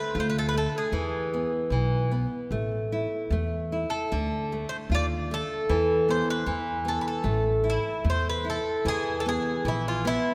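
A picked Irish bouzouki with metallic double strings opens beside a bright, fingerpicked nylon-string guitar with audible finger squeak and a woody pizzicato upright bass, setting a mournful, longing fado-style ballad at 76 BPM in a rubato 2/4 over Dm, E5 and A5 chords, with the bouzouki melody pausing at 1.5 seconds and returning at 3.9 seconds, all up front in a wet concert hall reverb, cut from a longer piece.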